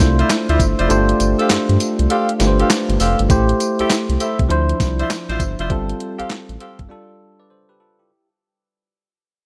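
A light reverb and digital ambience frame this bouncy, punchy new jack swing cut, taken from a longer R&B piece with a swung sixteenth-note feel. A crisp 8-bit drum machine sits up front with a thumpy kick, medium-tuned snare, hi-hat, handclaps and tambourine, its sampler-style hits carrying a tape-warm tone, though the kick is muted from 0.9 s until 3.3 s. Beneath it, a round analog bass mixes sawtooth, sine and triangle tones into a deep, dark, evolving line with a fast attack and sustained notes. A bell-like tine electric piano, bright and clean with a subtle chorus, comps through Dm9, G9sus4 and Am7 chords, while a mellow jazz-style horn section adds smooth, vibrato-tinged stabs doubled in octaves. The music fades out from 3.3 s, and at 6.9 s the electric piano plays alone on a closing F69 chord.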